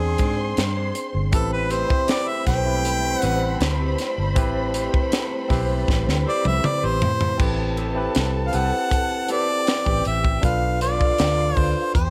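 A clear, up-front harmonica solo opens this bittersweet, silky 1970s-style soul excerpt over barky tine electric piano, a round, foam-muted electric bass, a twangy, slightly broken-up guitar with spring reverb in the background and an expressive bowed string section with vibrato and portamento, joined by a tight funk drum kit with a high-tuned snare at 0.2 seconds, a very quiet, swirling phased string machine that holds sustained chords from 1.3 seconds, and a drum fill at 5.9 seconds leading into the next section.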